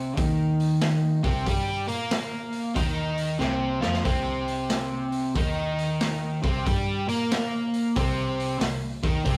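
Gritty and heavy, this short cut from a longer blues rock and southern rock power-trio piece swings in 4/4 over a single C minor chord, led by a crunchy overdriven electric guitar riff, double-tracked and picked up front. A raw garage drum kit enters at 0.2 seconds with a punchy kick, medium-tuned snare and hi-hat, sounding saturated with a pumping small-room quality and rolled-off top, and breaks into a fill from 3.4 to 4.1 seconds. Behind them, a bowed double bass plays sul tasto with light vibrato and an airy, intimate tone, all captured in a rough rehearsal-room recording with light reverb and warm saturation.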